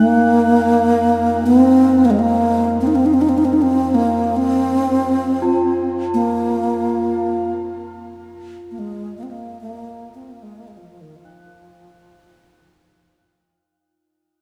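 Bathed in a huge ambient reverb, this spacious, meditative world excerpt fades out over its entire 13.4 seconds, with a breathy, close-miked bass flute up front carrying the vibrato-tinged melody through shimmer reverb and tape echo, a bronze singing bowl ringing with slow metallic beating under its own shimmer, and a dark, rumbling drone on F2 sustained beneath in a lush chorus.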